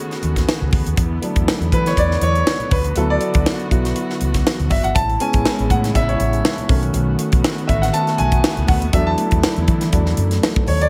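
A concert grand piano takes the spotlight throughout this 10.9-second cut from a longer piece of glossy, breezy 1980s jazz-funk pop, its open, long-sustaining tone sitting up front with deep bass and a subtle chorus shimmer. Beneath it, a lush bowed string section holds soft-attacked, vibrato-laden chords with a smooth top, while a crisp fusion kit with a high-tuned snare, punchy kick and hi-hat rides a lightly swung sixteenth feel under gated reverb. A fretless electric bass with an analog chorus and bright, very quiet congas fill out the dry, polished mix as the harmony moves through B7, E7sus4, D6 and Amaj7.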